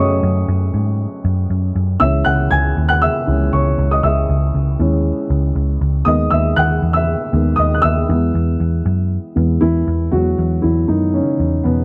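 This piano-driven pop excerpt moves at a steady 118 BPM in straight 4/4 and sits in E major, with an uplifting, warm mood. A dark upright piano carries the lead throughout, its mellow, woody tone ranging from the low register up into the high treble. Beneath it, a vintage muted picked electric bass holds down the low end with a round, foam-muted sound that is amped and placed up front, staying within a narrow low range. The harmony moves from F#m to C#m, then G#m over D# at 6.1 seconds before settling on E, and a new section begins at 10.1 seconds. The sound is dry and close, in the manner of a 1970s studio, with little room ambience around either instrument.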